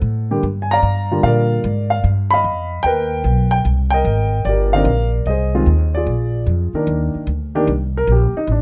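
Close, detailed and nearly dry, this short cut from a longer jazz piano trio piece swings at 149 BPM with a late-night mood. A woody, growly pizzicato upright bass with steel strings sits up front beside a natural-sounding baby grand piano with a warm tone and short sustain, carrying the melody over a Gm7, G7alt, Cm9, Fm7 and Bb7 progression. At 6.9 seconds the harmony lands on Ebmaj7 as the piano takes a solo, running to the cut at 8.6 seconds.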